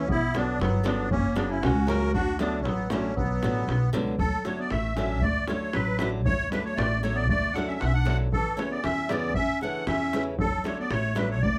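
Close, detailed microphones and a light reverb give this Balkan wedding-band fragment, cut from a longer piece, an intimate, present sound. At 116 BPM in a straight 2/4, the mood is virtuosic and exuberant, opening in B minor before moving to D major at 4.2 seconds. A reedy, shimmering musette accordion with its airy musette tuning carries the melody up front, while a mellow clarinet with a smooth top plays a classical-style second line beneath it. A fingerpicked acoustic flamenco guitar provides accompaniment, its finger squeaks audible, and stops at 11.4 seconds. The woody, pizzicato upright bass on steel strings anchors the low end, and a deep, vintage, band-limited davul enters at 0.1 seconds to drive the percussion.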